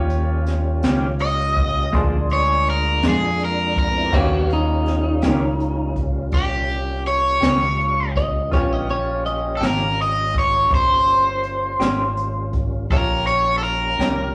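A gritty, laid-back slow blues in 12/8, cut from a longer piece, opens on a worn, slightly detuned upright piano in the background, a lightly overdriven tonewheel organ with key click, chorus vibrato and slow rotary speaker, a round, up-front fingered bass, and a brushed jazz kit with dark cymbals, a high-tuned snare and a boomy kick. A bright, crunchy overdriven guitar carries the melody from 1.2 seconds over a clean fingered guitar with tremolo, while a compressed guitar at the edge of break-up adds a second line from 4.1 to 9.6 seconds. Stone room reverb and tube saturation give the whole take the rough feel of a small rehearsal room.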